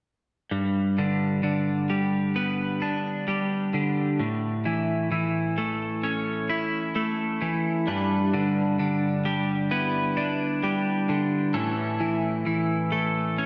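A bright, twangy twelve-string electric guitar opens the track at 0.5 seconds, picking clean, compressed arpeggios up front with a subtle chorus and a digital delay trailing each note. This hopeful, soaring slice of slow rock moves at 65 BPM in a straight 4/4, set in G lydian as the harmony alternates between G and A chords. At 7.9 seconds a warm pedal steel guitar enters, sitting softer in the mix than the guitar and holding sustained chords with gliding slide tones, fingerpicked attacks and volume swells, all coated in a lush chorus. Both parts continue together until the cut at 13.5 seconds. A wet hall reverb with a long two-second tail gives the whole a big arena sound.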